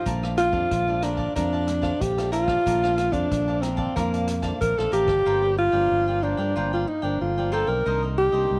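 Light reverb and studio ambience frame this playful, joyful samba-and-choro excerpt, where a breathy, close-miked alto saxophone carries the jazz-style melody up front with vibrato and subtone over bright, crisp picked cavaquinho, a classical fingerpicked nylon-string guitar in the background, a warm fingered electric bass, and a small-room vintage drum kit with punchy kick, hi-hat and rim click that stops at 5.2 s, just before the harmony moves from Bbmaj7 to Gm7.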